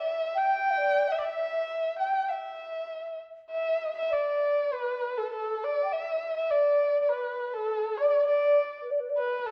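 Graceful and pastoral, this short fragment of a longer Chinese traditional chamber piece moves at 101 BPM in 4/4, though the rubato feel lets the pulse breathe freely. An end-blown bamboo xiao carries the melody with a pure, hollow tone, its notes tongued and colored by vibrato, sitting up front yet with a faintly distant air. A single bowed erhu plays the second line in a darker voice, with soft attacks, expressive portamento, its own vibrato and a smooth top. Both instruments share the same register, A4 to G5, in the D zhi mode with tuning at A4 = 436 Hz, and they play together throughout the 9.5 seconds. A moderate recital hall reverb of 1.5 seconds surrounds them, and the production leans dark and warm.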